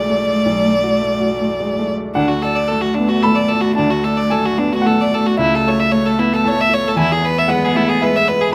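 Lightly reverberant, this fragment of melancholic, reflective neoclassical music moves in a rubato 3/4 at roughly 104-116 BPM, with harmony shifting from Bm7 to D at 2.1 s and on through A/C# to E. A close, focused violin bowed by one player carries the melody up front with vibrato, while a solo cello plays a smooth second line in the background and a woody, vintage-toned upright piano supplies the accompaniment. From 0.6 s a very quiet, ethereal pad adds mellow sustained chords with a slow attack and long release.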